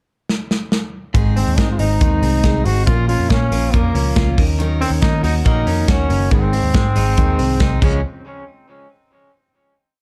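A brilliant, forceful trombone carries a motif-based pop melody in sentence-like phrases from 1.4 seconds, its light vibrato sounding distant and roomy over a breezy jangly indie pop groove at 140 BPM. An up-front studio drum kit opens with a fill at 0.3 seconds, then drives a dance-floor indie beat with off-beat open hats, a punchy kick and bright cymbals. A round, foam-muted vintage bass line, a twangy, compressed clean electric guitar rolling fingerpicked arpeggios and a full-bodied acoustic guitar strumming eighths in the background move through Ab, Bbm, Ebm7, Ab and Db to a final hit at 8.0 seconds, all in a dark, warm production with light reverb.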